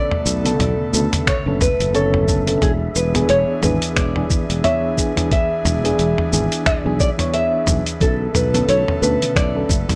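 Smooth and relaxed, this sunset chillout excerpt drifts in 4/4 with a gentle swing on the sixteenths, moving from Bm9 to E7 and back to Bm9 at 8.0 seconds. A boxy, fingerpicked nylon-string guitar carries the melody with a tape echo, while a mellow FM electric piano, round and warbling with chorus and tremolo, supplies the accompaniment. Beneath them an airy, breathy pad holds sustained chords with its own chorus, and a dark, wind-like tuned noise texture sits in the background, bathed in its built-in reverb. A dusty soul sampler-style kit of finger snaps, hi-hat, shaker and toms sounds compressed and gritty, joined at 1.3 seconds by a thumpy electronic kick, while a growly, punchy fretless bass sustains underneath. Very quiet, low-tuned congas with a thin, bright skin slip in at 8.0 seconds, all within a dry, gritty digital ambience.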